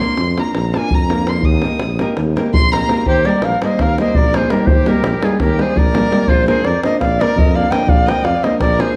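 Balkan folk in the manner of a wedding band, this exuberant, festive excerpt moves in a brisk 9/8 at 336 BPM counted in eighths, with a straight feel in Eb major. A rich, focused violin with vibrato carries the opening solo from 0.0 to 3.1 seconds, then continues as a second line. Beneath it, a fingerpicked nylon-string guitar with fresh strings supplies classical-style accompaniment, a tight davul drives the percussion, and a mellow tuba with light vibrato holds down the bass. At 3.1 seconds a breathy, bright ney takes the melody up front, its reedy, tongued tone carrying vibrato and rolled-off highs. The harmony moves from Bb to Eb and back to Bb, and the whole mix sits in a dark production with a moderate recital hall reverb of 1.6 seconds.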